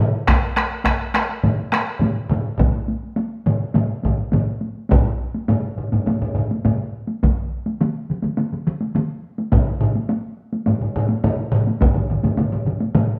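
Driving and ceremonial, this straight 4/4 Japanese traditional taiko ensemble piece moves at 104 BPM, cut from a longer performance played live together in one stone room with a wet reverb. Two solo taiko drum parts sit up front: one struck with heavy sticks and given a compressed, saturated edge, the other played with hard sticks in a live-room sound; one of them drops out at 11.9 s. Two taiko ensemble parts, both with heavy sticks, fill out the texture, one up front in the live room and the other in a smaller space, as the music shifts into a new section at 4.9 s.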